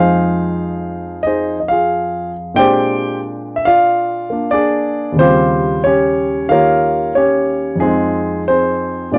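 Opening at once on a dark, mellow grand piano placed up front, this relaxed solo jazz fragment swings gently in four through an Fm7, Bb9 and Eb9 progression that returns to Fm7 at 7.8 seconds, spanning low bass to high treble in a moderately reverberant studio room.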